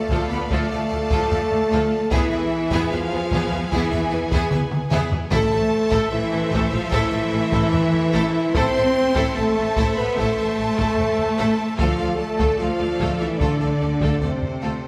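A straight 4/4 pulse at 74 BPM, driven by a taiko ensemble on hard sticks, carries this dark, epic orchestral film-score excerpt in A harmonic minor, where a lush, vibrato-laden violin section sings the melody over sustained chords from a warm French horn section, a focused string section and background trombones, while a smooth second violin line, distant violas, a close cello section and deep double basses fill the inner voices and bass, a drum fill arrives at 4.5 seconds, calf-headed timpani strike briefly from 5.3 seconds, and a wet scoring-stage reverb surrounds the sound.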